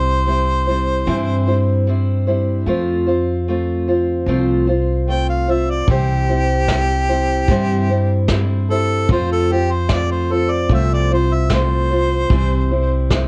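Over a straight 4/4 pulse, this nostalgic acoustic folk fragment sets a warm harmonica solo with light vibrato and a smooth top alongside dark, finger-squeaking picked steel-string guitar and woody, growly pizzicato upright bass, with a soft brush kit joining at 5.9 seconds, all set in light reverb and a worn cassette-tape sound whose warbly pitch drift deepens the wistful mood.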